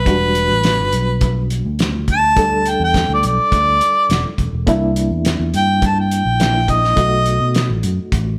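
A straight-eighth 4/4 groove at 104 BPM drives this soulful, mournful soul blues fragment in E minor, moving from Em7 to C7 at 4.7 seconds and B7 at 7.0 seconds. An up-front, mellow harmonica carries the melody with light vibrato, a soft attack and scooped notes, over a reedy, barky electric piano with light overdrive and fast tremolo. Underneath, a round, punchy fingered electric bass and a cloth-damped, thuddy drum kit with a fat snare and tight kick sit in light reverb, the band heard playing live together in one room.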